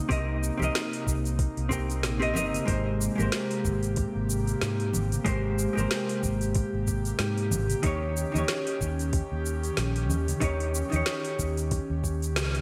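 A lush hall reverb and a big arena sound frame this relaxed, smooth sunset chillout excerpt in Ab major at 93 BPM, swung on the 16ths, moving through Cm7, Abmaj9 and Eb7. A dark, clean hollow-body jazz guitar with digital delay and slapback echo accompanies a breathy, chorused pad of sustained chords, while a round, punchy fingered bass and a soft, tape-tinged electronic kick enter at 0.1 s. A produced R&B kit with a woody snare, metallic hats and shaker adds slapback echo, low-tuned congas sit in the background from 0.6 s, and the band hits an accent at 12.4 s.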